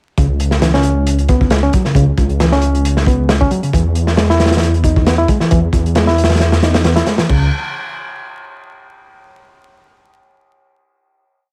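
A gritty, energetic breakbeat piece in C# minor opens at 0.2 seconds with everything arriving together for the drop, moving at 135 BPM in 4/4 with a light 16th-note swing. A crunchy breakbeat drum kit sits up front, a looped break with edits built from kick, snare, hi-hat and crash, its punchy kick, medium-tuned snare and dark cymbals saturated and rolled off at the top in a small-room sound. Underneath, a dark detuned saw bass rumbles between C#2 and E2, its unison voices beating against each other as long gliding notes sustain with tube saturation. A reedy electric piano carries the riff as a repeating 16-step sequence between C#3 and E4, its clean tone roughened by vintage 12-bit sampler grit and trailed by dub echo, as if heard through built-in speakers. Vinyl crackle and studio reverb surround the mix, and after the drop ends at 7.3 seconds the piece closes on a final chord that lasts until 9.1 seconds.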